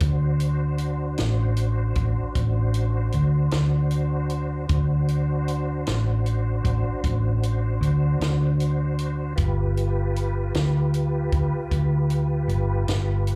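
A dark, round hollow-body bass sits up front in this gritty, swaggering slow blues in 12/8, heard live through a club PA with only a touch of reverb. Beneath it, a compact cocktail kit keeps a dry, natural pulse on hi-hat, a high-tuned snare and a thumping kick, while a clean tonewheel organ holds soft sustained chords through a slow rotary speaker and chorus vibrato. The harmony rests on D7 before moving to G7 at 9.4 seconds, in this fragment cut from a longer piece.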